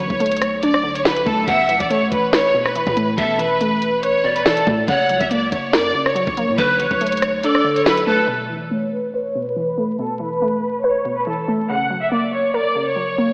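Soaked in lush hall reverb, vinyl crackle and an AM-radio tint, this dark, ominous drill excerpt moves at 141 BPM in a half-time feel over Bm7, Asus2 and F# chords. A biting, vibrato-laden violin section carries the melody up front through a low-pass filter, joined by a warbling, detuned lo-fi pluck with chorus, a deep sine 808 bass in the background, and a drum kit with a knocking kick, sharp snare, rim click and hi-hat. From 1.5 s a breathy bamboo pan flute with chiff and analog delay adds a second line, the kick and bass drop out at 7.4 s, and from 8.3 s only the violins and pluck remain under a filter sweep.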